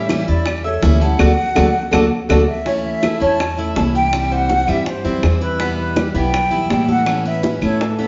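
Latin music in the Cuban son and guajira vein, this sunny, danceable cut from a longer piece moves at 163 BPM in a straight 4/4. A breathy concert flute carries the melody throughout, tongued and expressive with vibrato and lifted highs. A fingerpicked flamenco guitar adds a second line in the opening 2.4 seconds and returns briefly at 7.8 seconds, its finger squeaks audible. Beneath it a picked plugged-in steel-string acoustic guitar supplies accompaniment, while a Cuban tres spins metallic, double-strung arpeggios and a dark, thumpy pizzicato upright bass sits up front. Round, low-tuned bongos struck with hard hands, ringing high-tuned congas played with soft hands and woody claves stay close and dry in the background. The band plays live in one room with a wet large studio reverb and a rolled-off top end, landing a full-band accent from 1.2 to 2.7 seconds as the chords move from A7 to D before the second section opens on A.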